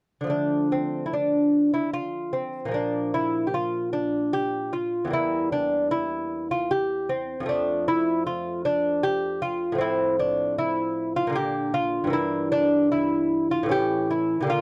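In a rubato 3/4 at 76 BPM, this solemn, grave baroque-style dance in D minor features a solo lute, fingerpicked on delicate, doubled gut strings, some of them octave-doubled, and sitting up front in a dry, close 1970s-style studio sound, moving from Dm through Bb, Edim and Fmaj13 to land on A at 13.7 seconds before the fragment cuts off.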